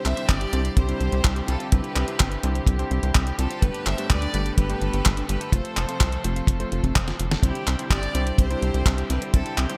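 This danceable, romantic italo disco piece rides a straight 4/4 pulse, anchored by a dry, dark acoustic kick drum sitting up front and an overdriven, sampler-style 8-bit drum machine, re-recorded in a small room with gated reverb, supplying handclaps, hi-hat and a fat snare, with a drum fill at 7.1 seconds. Beneath it, a punchy sequencer bass with a sawtooth and square-wave filter pluck drives the groove, also placed up front. A clear, biting studio violin section carries the melody with light vibrato and tape echo, while a rich, earthy chamber string section holds sustained chords from a distance. In the background, a vintage electric grand piano with a clangy low end plays short stabs, and a dark, clean, fingered electric guitar adds compressed arpeggios through tape echo. The harmony moves from Cadd9 to Gadd9 and F before returning to Cadd9 at 7.4 seconds, in this section cut from a longer piece.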